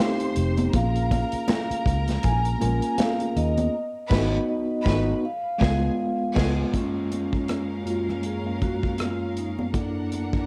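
Smooth and lush, this short cut from a longer piece is 1970s-style soul with a gently swung sixteenth-note feel. A metallic, ringing vibraphone carries the melody with slow motor vibrato, close and dry with a cassette-tape tint. Beneath it, a mellow tine electric piano plays the accompaniment up front, while a distant, intense violin section adds a bowed second line with vibrato and tape echo. A modern studio drum kit with bright cymbals, a punchy kick, rim clicks and a medium-tuned snare drives the groove, and very quiet high-tuned congas played with soft hands ring in the background. A dark, round, foam-muted fingered bass enters at 0.4 seconds and drops out at 6.6 seconds, just as the harmony settles onto a rich major-ninth chord in a small, lightly reverberant room, after the whole band accents together from 3.7 seconds.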